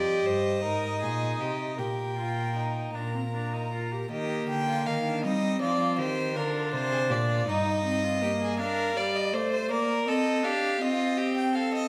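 Classical baroque-style fugue for string quartet in Eb major and a straight 6/8 at 54 BPM, elegant and lively, with a nasal first violin carrying the melody up front with an airy bow, a second violin with light vibrato on the inner line, a reedy viola supplying accompaniment, and a rich gut-string cello holding the bass until it stops at 8.6 s, all in period style and bathed in the wet reverb of a recital hall as this short excerpt moves into its second section at 4.1 s.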